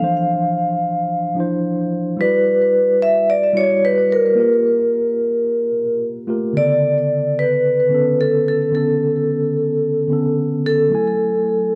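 A metallic, ringing vibraphone with fast motor vibrato, close-miked and up front with digital delay, carries the melody over a clean, mellow tine electric piano, also touched with digital delay, in this smooth, wistful chillout excerpt in B minor at 110 BPM, moving through minor ninth chords under a moderate plate reverb and shifting into a new section at 6.6 seconds.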